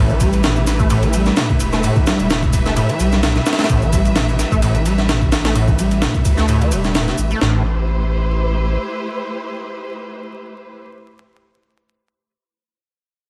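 Swung, thumpy sampler-style breakbeats with a pitched-up, high-tuned snare, kick and ride drive this energetic, gritty breaks excerpt, backed by a tape-flavored electronic shaker in the background, a deep, saturated sine sub bass up front, a squelchy, screaming sawtooth acid riff whose resonant filter sweeps until 7.4 seconds, and distant, lush bowed strings with vibrato, portamento and sidechain pumping that hold sustained chords and ring on alone to 10.8 seconds, over a bed of vinyl crackle and light digital ambience.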